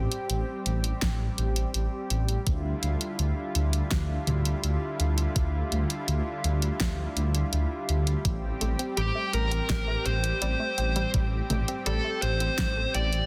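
A dark, rumbling detuned saw bass with tube saturation sits up front in this nostalgic, nocturnal synthwave piece at 83 BPM in A minor, moving from Am7 to Dmadd9 and back beneath a lush, airy pad that pumps with sidechain and shimmers with chorus. A layered pop kit with a fat snare, hi-hat and toms enters at 0.1 seconds, and a thumpy, tape-toned electronic kick joins it at 1.0 seconds, both carrying a small-room character, with light reverb over a dense, heavily limited modern master. At 8.2 seconds a round, wave-folded analog pluck plays arpeggios in the background through chorus and digital delay, and from 9.0 seconds a smooth overdriven lead guitar carries the melody up front.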